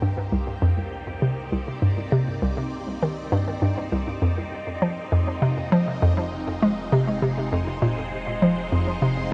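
A hollow, bouncy square-wave pluck sits up front, playing a detuned riff with a noisy edge and a fast, short-decaying filter snap, thickened by chorus and trailed by tape echo. Behind it, a swirling, vintage string machine holds bright sawtooth chords with a soft attack and long release, colored by ensemble chorus and phaser, and it fades in across the whole 9.3-second passage. Deep in the background, a round, dark analog bass sustains low notes with a wave-folded tone and fades in the same way. This is ambient, sequencer-driven space music in C minor at 100 BPM in a straight 4/4, moving from Cm7 to Fm7 at 4.8 seconds. A huge reverb and a cassette-tape character give the cut from a longer piece a mysterious, expansive atmosphere.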